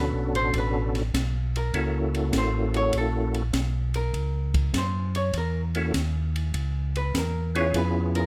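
A rough home-demo mix with light reverb captures a short, bluesy and greasy soul jazz organ trio cut from a longer piece, swinging in 4/4 at 100 BPM in F# mixolydian over Bm7, F#7#9 and C#7#9. Up front, a percussive tonewheel organ carries the melody with third-harmonic percussion, chorus vibrato and slow rotary speaker, while a second, mellow and round tonewheel organ plays the bass line with the same vibrato and rotary. A clean, picked, miked archtop guitar with plate reverb takes a hollow-body solo throughout, and an acoustic jazz kit enters at 0.3 seconds in a studio room, with dark cymbals on ride and hi-hat, a high-tuned snare and a boomy kick.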